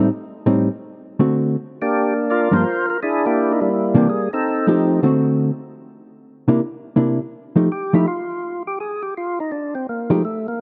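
A percussive tonewheel organ carries the melody up front in this soulful, swinging jazz fragment, its full, clean tone marked by third harmonic percussion, vibrato and a slow rotary speaker. Beneath it, a dark, compressed hollow-body electric guitar, fingered and also up front, plays the accompaniment in a 4/4 swing feel. The organ drops out at 5.0 seconds, leaving the guitar alone until the organ returns at 7.7 seconds for a short solo that runs to the end. The harmony moves through Am7b5, D7, Gm7 and C9 to F9, then circles back through D7 and C9 before settling on F9 for the closing passage. The guitar stops at 10.2 seconds. Light reverb surrounds a rough home demo mix.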